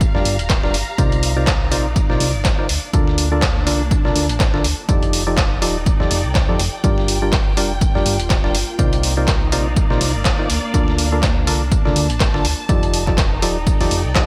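Piano house at 123 BPM in 4/4, with a 57% swing on the sixteenths and a soulful, bittersweet mood, cycling through Gm7, Cm11, Bbmaj7 and F13 in this short cut from a longer piece. A punchy electronic kick, re-recorded in a large room, anchors the groove alongside a round, dark FM bass with tube saturation and sidechain pumping, running from D1 to F2. A bright house kit adds layered handclaps and hi-hats with gated reverb from 0.3 seconds, while a gritty, sampler-style soul kit sits in the background with a fat snare, tambourine and filtered hats. From 0.1 seconds a hollow, mellow organ stab carries the riff, its fast, percussive attack dressed in chorus and digital delay and pumping from the sidechain. Behind it all, a distant, lush string section bows with vibrato and portamento, and the whole mix has a light digital ambience and a bright 1980s-style production.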